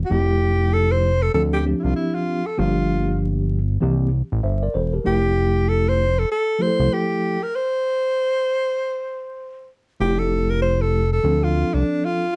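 Hip hop excerpt at 97 BPM in F major with a relaxed, warm mood and a swung sixteenth-note feel, where a breathy, close-miked alto saxophone with vibrato plays an intimate jazz-style solo up front over a mellow, clean tine electric piano heard through built-in speakers and a fat, detuned analog bass with a sawtooth edge, ring modulation and a filter sweep, cycling through Fmaj9, Dm7, Gm7 and C7 with a break at 7.5 seconds, in a dark production with vinyl crackle and moderate studio reverb.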